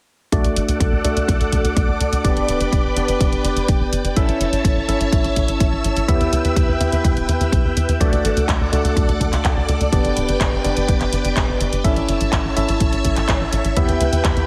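A punchy, layered electronic kick and a house kit of handclaps and bright hi-hats set in gated reverb drive a straight 4/4 at 125 BPM beneath a tight, sawtooth sequencer bass, giving this romantic, danceable italo disco excerpt in D major its pulse. A lush, vintage string machine holds sustained chords through phaser and ensemble chorus, while a worn, slightly out-of-tune tine electric piano plays lightly overdriven stabs through a low-pass filter and digital delay, and both the bass and the piano carry filter sweeps. The chords cycle through D, G, A and Em in a light reverb from 0.3 to 14.5 seconds.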